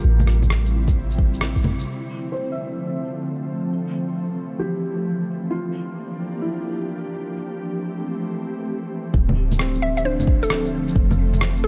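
An airy, detuned pad with vintage sampler grit and sidechain pumping hangs over this wistful, ghostly future garage excerpt at 132 BPM with a swung 16th feel, joined by a felt-muted upright piano with analog delay, a round, sine-like 808-style bass, a soft, tape-warm kick, and muffled, overdriven electronic bongos, shaker and rim click, the low end and percussion dropping out after the opening bars and returning around 9.1 s, where a woody FM mallet pluck with tape echo enters at 9.8 s.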